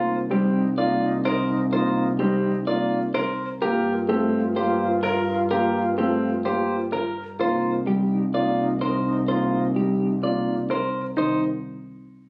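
A straight 4/4 pulse at 127 BPM drives this meditative yet urgent fragment of minimalist classical pattern music in C dorian, cycling from Cm7 to Gm9 and back before settling on C minor near 11.2 seconds. A clean, compressed electric guitar carries the melody over a mellow, dark grand piano and a bowed, woody double bass, while an up-front concert grand spins clear, polished arpeggios with audible action noise. A pure, softly attacked alto flute with vibrato adds a second line from 0.1 to 10.9 seconds, and the whole sounds phone-recorded in a room with light club reverb.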